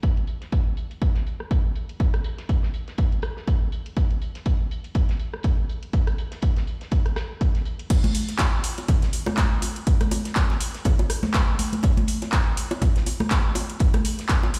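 Deep and smooth, this house groove at 122 BPM in 4/4 carries a 57% swing on the 16ths and comes from a longer piece. A punchy analog kick drum sits up front, tape-warm and re-recorded in a large room with studio reverb, running from the start to 14.4 seconds. A layered, overdriven electronic kit adds metallic hats, handclaps, rim clicks and crash cymbal, while a dry, dark 70s acoustic kit sits in the background with a fat snare and rolled-off top, its hats pumping against the sidechain. At 7.9 seconds the drop arrives and ringing bongos and congas enter, close and dry with hard hands and a sidechain pump of their own. The whole mix sounds as if played on a big sound system in a bare room, wrapped in stone room reverb.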